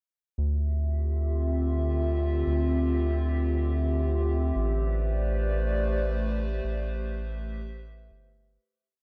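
Cerebral and glitchy, this short IDM piece drifts in free time in D minor, moving from Dm11 to Am11 at 4.6 seconds before fading out from 5.9 seconds. A deep, round analog bass enters at 0.4 seconds with long gliding notes and a filter sweep. Up front beside it, a warbling, nostalgic tape-like pad holds detuned, slow-attack chords treated with chorus, phaser, built-in reverb and vintage 12-bit sampler grit, all captured in a dry, gritty hardware recording.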